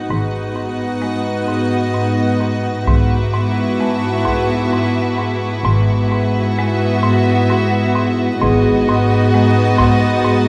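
This eerie, ominous suspense film score moves at a slow 65 BPM in 3/4, in G# phrygian, and is cut from a longer piece. Intimate chamber strings carry it. A warm violin section plays a sul tasto melody between D#5 and E5 over a second violin line, a dark viola accompaniment and a dark cello bass, while a warm double bass section holds G#1 in the background until 9.3 seconds. An icy, crystalline glass pad sustains chords with chorus and its own reverb, and a ringing vibraphone with a fast motor vibrato adds texture. Beneath them a buzzing, woody marimba with hard mallets plays a riff in the low register. At 2.9 seconds a close, dry taiko ensemble enters with hard sticks, along with a high, dark violin texture, as the harmony moves from G#m7 to Esus2/G# before returning to G#m7 at 8.4 seconds. The close, detailed recording sits in light reverb, with vinyl crackle.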